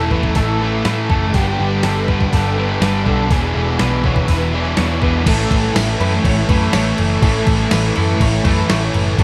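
A stack of electric guitars opens this wistful, blissful shoegaze and dream pop excerpt alongside a very quiet, vintage organ-string pad that holds soft-attack chords through phaser and ensemble chorus. A slightly broken-up, compressed guitar through a small old amp picks arpeggios with chorus and tape echo. Alongside it, a bright, double-tracked overdriven guitar, a hollow-body semi-hollow guitar in the background with reverse reverb, and a faint fuzz guitar each play riffs. Underneath, a dark, round, foam-muted bass carries the low end, and from 0.1 s a crisp 8-bit drum machine sits up front with a thumpy kick, medium-tuned snare, hi-hat and crash, its tape-tinged sound carrying large-room ambience. The harmony moves from Amaj7 through Gmaj7 and E7 before returning to Amaj7 at 5.3 s as a new section begins, and a jingly, band-limited tambourine adds a faint shimmer from 5.8 s to 8.8 s, with light reverb framing the dense, straight 4/4 rock texture.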